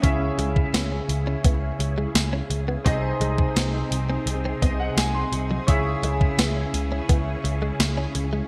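At a straight 85 BPM in 4/4, this moody, nostalgic 1980s-style pop excerpt in C# minor sets a thumpy, tape-tinged 12-bit drum machine with gated reverb and a round, foam-muted picked bass up front, beneath a clear concert grand piano with analog chorus that plays a fill from 4.3 to 5.7 seconds, silky string-machine chords colored by phaser and ensemble chorus, and a bright, compressed direct-recorded guitar riff with chorus and digital delay in the background, all moving from C#m to G#/B# and back within a bright digital production bathed in a moderate plate reverb.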